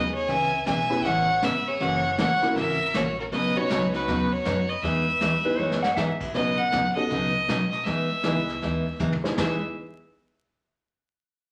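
A swinging, playful slice of western swing country, cut from a longer piece, with a loose swing lilt and a faintly old-record feel from vinyl crackle and a large studio reverb. An up-front, nasal bowed fiddle carries the melody throughout with light vibrato, while a second, more focused fiddle plays a close second line until about 6.0 seconds. Underneath, a full-bodied picked dreadnought acoustic guitar sits forward in the mix, a detuned, jangly honky-tonk upright piano adds bright accompaniment, and a woody, thumpy pizzicato upright bass on gut strings anchors the low end. A distant, roomy brush kit with dark cymbals and a punchy kick comes in at 0.3 seconds and marks the section turns with fills. Briefly, around 5.5 seconds, a dark, clean lap steel slides in with a short second line, as the harmony, having moved from the opening minor-seventh and dominant chords through Badd9, rests on Emaj7 before returning to Badd9.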